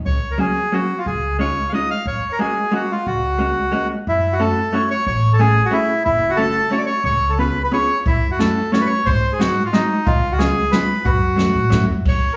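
A reedy, bright bandoneon sits up front with a slapback echo, carrying the melody of this whirling, bittersweet musette waltz excerpt, which has a lilting swing and a loose, rubato feel. A woody pizzicato upright bass and a clean, dark, picked hollow-body electric guitar with its own slapback accompany, and the harmony turns more wistful at 4.1 s. A brushed drum kit with a boomy kick joins at 8.1 s, all heard as a live club gig through the venue's PA with a roomy reverb.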